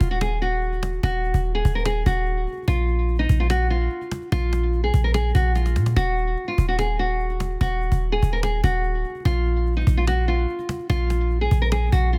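Hip hop and trap in Eb minor, this melancholic, eerie clip cut from a longer piece moves at 146 BPM with a half-time feel, cycling between Ebm and Bb5. An up-front, fingerpicked nylon-string guitar carries the classical-tinged melody through a low-pass filter and digital delay, while a deep, boomy 808-style bass with a clean sine tone, a fast attack and a decaying tail sits dark and forward beneath it. A snappy, close and dry cajon with snares keeps time and plays a brief fill at 5.6 seconds, all inside a small room ambience and a dense, heavily limited modern master.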